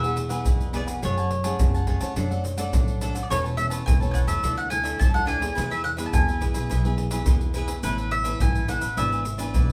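Samba and choro at 106 BPM in a straight 4/4, this playful, festive passage is cut from a longer piece, with the tuning set at A4 = 435 Hz. A bright, picked mandolin carries the melody up front, its double strings giving a woody ring, while a crisp cavaquinho and a fingerpicked, classical nylon-string guitar with fresh strings fill out the accompaniment. Underneath, a thumpy pizzicato upright bass on steel strings anchors the low end, and tube shaker, pandeiro and a deep surdo sit prominently in the mix with a live-room presence. The harmony moves through colored chords such as Eadd9, F#madd9, Dsus2 and Asus2 before settling on E7/G# at 9.0 seconds. The whole band plays together live in one room, captured with a moderately reverberant studio ambience that keeps the ensemble close and lively.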